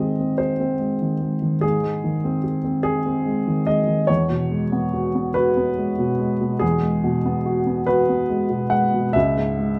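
A slow, rubato lilt in six-eight time gives this short neoclassical minimalist piano piece, cut from a longer work, its unhurried, wistful sway. A solo upright piano carries everything from 0.0 to 9.8 seconds, reaching from the low register up into the upper middle of the keyboard. Its tone is woody and intimate, sitting up front with the mechanical noise of the action clearly audible. The harmony moves from G# to Eadd9 at 4.1 seconds and settles on C#m at 9.1 seconds, deepening the melancholic mood. A light reverb lends the natural sound a gentle sense of space.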